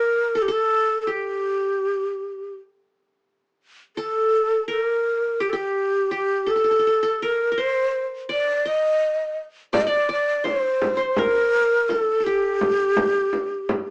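A breathy, mellow ney carries the melody up front, its end-blown reed-cane tone tongued and expressive with vibrato, in this melancholic, soulful Arabic maqam excerpt in a straight 4/4. Beneath it a bright qanun, played with fingerpicks on its triple strings, traces a second line in the same register, and a small frame drum with a bright, acoustic sound enters at 9.7 seconds. The ensemble plays live together in one room with light reverb and a small-speaker character.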